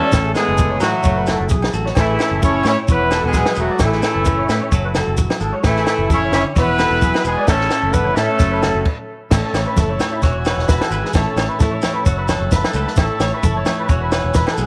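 A swung highlife groove at 131 BPM in A major, driven by a compact cocktail drum kit with a punchy kick and high-tuned snare, a round, foam-muted fingered bass, and quiet congas, ringing agogo bells and grainy shekere set in the background, carries this sunny, joyful excerpt. Up front, a tight horn section with light vibrato and octave doubling states the melody through tape echo, while a bright, twangy guitar through a small old amp picks arpeggios with chorus and echo over a clean, scooped electric guitar accompaniment. After a brief stop at 8.9 seconds, the horns drop out and a buzzy, overdriven combo organ enters at 9.3 seconds with sustained chords, all in a light reverb.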